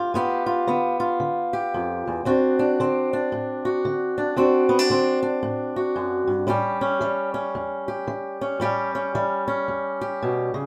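A boxy, up-front fingerpicked acoustic guitar plays alone in this swaggering, laid-back swung blues at 113 BPM, moving through G7, D7 and A7 under light reverb across a 10.7-second clip cut from a longer piece.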